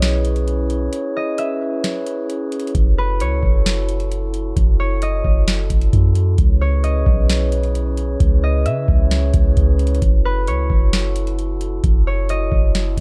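A booming analog drum machine rides a half-time 4/4 groove at 132 BPM, with a deep kick, crisp snare and metallic hats sitting up front as if re-recorded in a small room, while a soft, round 808-style bass rolls underneath in F# dorian, with a break from 0.9 to 2.7 seconds. This hazy, melancholic stretch of atmospheric cloud-rap alternates between C#m7 and F#m7, as a close-miked glass harmonica holds glassy, ethereal chords that pump against the beat. Above it, a fingerpicked concert harp rings out a tape-echoed, filtered melody, all set in a dark digital ambience, cut from a longer piece.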